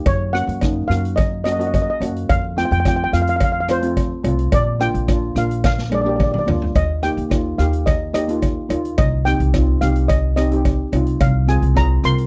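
Calypso with a sunny, carefree mood, this short cut from a longer piece opens with a double-seconds steel pan laying down shimmering, airy chords in a middle register, played with medium rubber sticks. Just after, a lead pan struck with soft rubber sticks carries the melody higher up, its mellow, metallic tone sitting up front and trailed by a slapback echo. A woody, steel-strung pizzicato upright bass sits prominently underneath, while a polished street-band drum kit with a boomy kick, a medium-tuned snare, hi-hat, rim clicks and toms brings a big-room sound and breaks into a fill from 5.6 to 6.8 seconds. A close, dry cowbell ticks along quietly in the background until 11.9 seconds, as the harmony moves through Gb, F, Bb, Eb, Cm and Fm/C. The dry, close production carries a 1970s studio character with little reverb.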